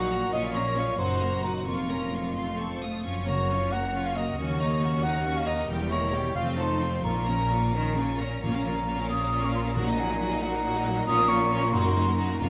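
A mellow, distant cor anglais stands out in this stormy, dramatic classical passage, carrying a roomy second line in Bb minor at 90 BPM in a rubato 6/8. Above it, a clear chamber violin section sings the intense melody with vibrato. In the background, a lush symphonic violin section adds a focused second line, and a smooth, even viola section fills in the accompaniment. A concert harp rings out thumb-plucked arpeggios, while a bright cello section and a rich double bass section anchor the bass. At 8.4 seconds a warm clarinet joins in the background as another second line, and very quiet timpani with hard mallets strike articulate notes. At 8.7 seconds a pure, expressive concert flute with a soft attack sits above the ensemble in this cut from a longer piece, all of it bathed in a wet scoring-stage reverb.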